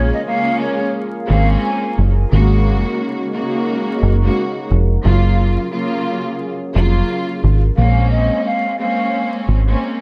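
This gritty, dark hip hop piece, cut from a longer work, rides a swung sixteenth-note feel over Bbm9, Ab9sus4 and Gbmaj7 chords. A deep dub fingered electric bass sits up front, round and foam-muted with a direct, amped tone. A studio string section carries the bowed sul tasto accompaniment throughout, intimate and smooth-topped with vibrato. Alongside it, a moody analog pad of detuned sawtooth and sub octave layers holds slow-attack chords through a chorus effect until 7.7 seconds. A breathy, hollow silver concert flute plays the melody at the opening and again from 7.8 seconds, close-miked with vibrato and colored by tape echo. The mix is echo-heavy, with light small-room reverb and a layer of vinyl crackle.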